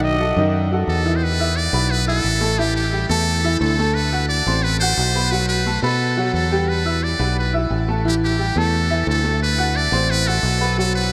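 A straight, danceable Latin groove in four drives this passionate fragment of a longer piece. A growling, raspy trumpet opens with a brief solo statement lasting half a second, and a trumpet with a metal mute takes over the melody at 0.9 s, its buzzy, thin tone close-miked and up front, with vibrato and scooped notes in a pop style. Beneath it, a woody upright piano with a vintage, brilliant character spans a broad range in accompaniment, while a fingered electric bass sounds dark, round and punchy near the front of the mix. The harmony moves from B7 through E5, A5 and D6 chords, then reaches Em7 before returning to the A5 and D6 turn. The ensemble sits in a vast, echoing space bathed in huge ambient reverb.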